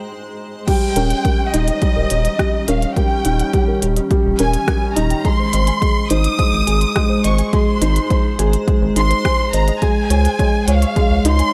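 A lightly reverberant, tender and luminous piano-and-strings electronica excerpt at 105 BPM opens on a felt-muted upright piano riff with audible action noise over a cloudy granular pad, then at 0.7 s drops into a lush bowed violin section melody, soft round pluck arpeggios with chorus and delay, a punchy layered electronic kick, a clicky tape-tinged kit of hi-hat, rim click and crash, and a deep round analog bass joining at 1.0 s, with the pad, pluck and bass all sidechain-pumping across chords moving from Ab through Eb7 to Dbsus2.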